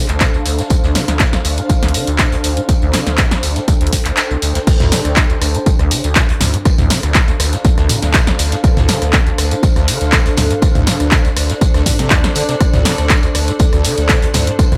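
A squelchy, resonant sawtooth acid bass riff with tube saturation, chorus and delay drives this gritty, trippy acid house excerpt in D minor at 121 BPM, over a blurred, evolving granular cloud pad that pumps with the sidechain, a punchy, tape-warm analog drum machine with claps, hats, rim clicks, tambourine and toms, an up-front electronic kick that drops out at 4.2 seconds before the drop lands at 4.7 seconds, and a very quiet, muffled lo-fi vintage drum kit underneath.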